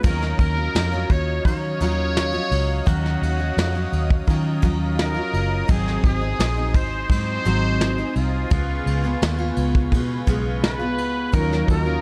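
Indie pop with a bedroom pop hush, this mellow, wistful cut from a longer piece sets a bright trumpet melody with scooped notes, analog chorus and delay over a full-bodied picked steel-string acoustic guitar with lush chorus and a warbly pitch drift. A round, foam-muted electric bass sits up front with a soft brush drum kit of hi-hat, kick, ride and snare, while a smooth, detuned analog pad with chorus and phaser hangs in the background over chords moving from Ebm9 through Ab7 and Db7. Nostalgic lo-fi synth keys with a cassette-tape warble flicker at the very start and return at 11.3 s, and the production is dark and reverberant.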